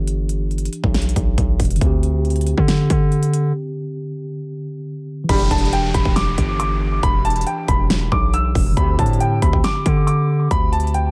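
A saturated, heavy distorted 808-style bass anchors this brooding, menacing trap excerpt at 138 BPM in a half-time feel in E minor, driven by an up-front big-room dance drum kit with a punchy kick, huge snare and crisp hats over a mellow tine electric piano filtered and delayed on Em7 and D7sus4, until at 5.3 seconds a dark, long-sustaining baby grand piano melody enters high above, joined by brief distant brass ensemble stabs in the background and an electronic downlifter, all set in echo-heavy digital ambience.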